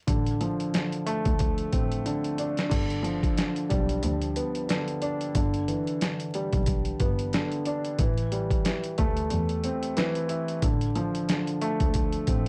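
The groove rides swung sixteenths in a steady four, with a sampler-style boom-bap kit of thumpy kick, medium-tuned snare, hi-hat and crash that sounds compressed, pitched down and gritty, sitting up front, with a short drum fill at 2.1 seconds. This slice of a longer hip-hop piece has a dark, reflective mood. A mellow grand piano carries the harmony in a low-middle register, its long sustain colored by a cassette-tape haze, and it shares the foreground with the drums. Beneath it a single bowed double bass holds the low end with a smooth, even tone, vibrato and a touch of tube saturation. The chords move from Dm7/A through G7, Em7/G and Am7 before settling on Dm/A. The mix is dry and raw, like a hardware recording, with vinyl crackle drifting across the whole sound.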